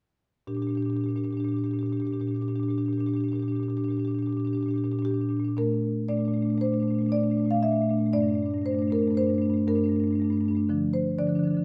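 A solo marimba played with medium mallets sits up front in this contemporary classical excerpt, its rosewood bars giving a woody, warm voice that ranges from G2 to F5 across a loose, rubato 5/4 at 118 BPM in Bb major, tuned to A4 = 435 Hz. The mood is playful, opening on Bb6 at 0.5 seconds and moving at 5.6 seconds into a second section that passes through Bbmaj7, Gmadd9 and Dm. A moderate recital-hall reverb with a 1.4-second decay surrounds the instrument.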